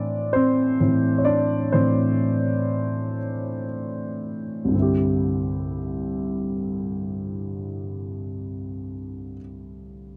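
Tender and romantic, this slow pop fragment in 6/8 and C major moves at about 38-44 BPM in dotted quarters, with a warm, worn baby grand piano carrying the accompaniment from 0.0 to 10.2 seconds across a range from C2 to D5, playing solo through the first 4.7 seconds. The tempo slows through the opening 4.7 seconds over an A minor chord before the harmony moves to Cadd9 at 4.7 seconds. The piano sits up front with long sustain and a touch of studio reverb in a dry, close 1970s-style recording, cut from a longer piece.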